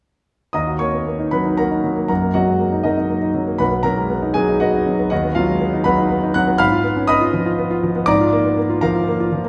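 A stormy, passionate classical virtuoso piano study in Eb minor, played in 6/8 at 80 BPM with a free rubato feel, this brief passage cut from a longer piece sets a solo concert grand, smooth and vintage in tone with a deep bass and placed up front, from 0.5 to 9.5 seconds, ranging from B1 to F#6 over a progression from Ebm through B to Bb7/Ab inside a wet church or concert-hall reverb.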